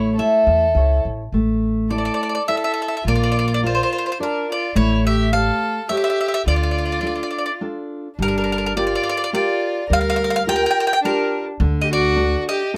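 A straight 3/4 pulse at 105 BPM carries this romantic, passionate Italian folk serenade, a fragment cut from a longer piece and set in D minor before it moves to G minor at 8.2 seconds. Up front, a round, picked mandolin with doubled strings sings the melody, while a single bowed violin adds a smooth, even second line with rich vibrato beneath it. A fingerpicked nylon-string guitar gives a deep classical accompaniment with a dark tone and an audible finger squeak. An upright bass, plucked pizzicato on gut strings, sits close and thumpy with a woody grain, finishing at 12.3 seconds. The harmony moves from A through Asus4, Bb, A7 and Dm, then settles on Gm7 before closing on D, all captured by close, detailed microphones in a light reverb.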